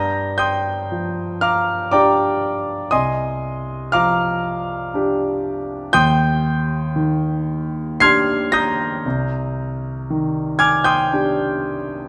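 Classical impressionist solo piano in C minor, this short passage cut from a longer piece moves at a slow 59 BPM in 3/4 with a rubato feel that lets the time breathe. A concert grand piano carries the whole 12.1 seconds alone, its tone warm and natural with a deep bass, spanning a range from C2 up to C7. The instrument sits up front, framed by a moderate recital hall reverb with a 1.8-second decay that adds a soft halo around each phrase. The harmony drifts through Gm7, Cm11, Ebmaj7 and Cm9, colored extended chords that give the music a wistful, nocturnal cast. The result feels intimate and reflective, like a quiet late-night reverie.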